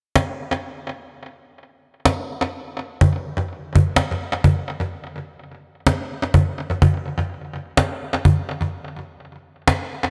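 A woody cajon carries this moody, sensual R&B fragment, sitting close and up front with faint snares rattling beneath its acoustic body. It plays from 0.2 to 9.9 seconds at a slow 63 BPM in 4/4, with a 16th-note swing of 58% giving the groove a loose, unhurried sway. Tape echo trails each hit on the cajon, and the mix as a whole leans heavily on echo. A moderate plate reverb with a 2.9-second decay surrounds the instrument, lending the close sound a sense of lingering space. Cut from a longer piece, the short passage holds a single section throughout.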